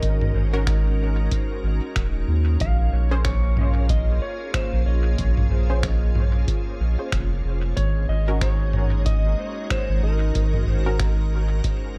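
Ambient dub with a meditative, deep mood and a swung 4/4 feel, built on an up-front round sine sub bass and a dry, distant analog kick, with a muffled, pitched-down sampler-style kit of finger snaps, hi-hat and toms trailing dub echo, beneath a bright, detuned organ-like pad in ensemble chorus, muted sawtooth chord stabs with a filter pluck entering at 0.5 s, and a clean electric lap steel melody played with slide and fingerpicks that drifts through dub echo in a dark, close production cut from a longer piece.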